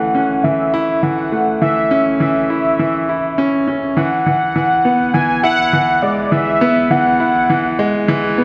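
A wet echo-chamber reverb with small-room ambience surrounds this moving, cinematic piano and strings electronica fragment, built as a build-up over its 8.4 seconds. A clear, polished concert grand piano sits up front with deep bass and short sustain, playing a delayed riff. Above it, a velvety, full-bodied synth lead of detuned sawtooth and triangle voices carries the melody with chorus, vibrato and delay over a move from F#m7 to Eadd9 at 4.0 seconds.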